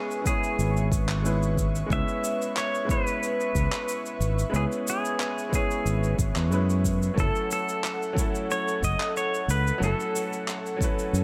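Wistful and warm, this short sunset chillout excerpt drifts along at 91 BPM in 4/4 with a straight feel, sitting in C# minor and moving from C#m7 to F#m7 at 7.2 seconds. A twangy, clean pedal steel guitar carries the melody with fingerpicks, slide and volume swells, its line treated with tape echo. A brilliant, slightly worn concert grand piano accompanies throughout, passing through a low-pass filter sweep with digital delay, while an airy, breathy pad holds sustained chords high above with a slow attack, long release and a chorused, detuned shimmer. Electronic cabasa and handclaps enter at 0.1 seconds and a deep, tape-warm electronic kick follows at 0.3 seconds, both re-recorded in a small room. The loudest part is a growly, overdriven fingered electric bass, direct and up front, coming in at 0.6 seconds. Light reverb and digital ambience wrap the mix in a soft sense of space.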